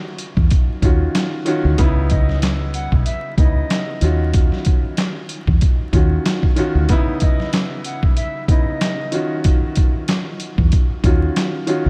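Moody and dark, this boom-bap hip-hop excerpt moves at 94 BPM with a swung 16th feel, as a polished baby grand piano lays filtered chords alternating between D#m9 and C#m9 over gritty, pitched-down sampler drums with a thumpy kick, medium-tuned snare, hi-hat and handclaps sitting up front. A deep, round fingered electric bass anchors the low end with punchy, foam-muted tone. From 2.1 to 9.4 seconds an airy, reedy concert flute drifts in the background through tape echo, all wrapped in light reverb and vinyl crackle.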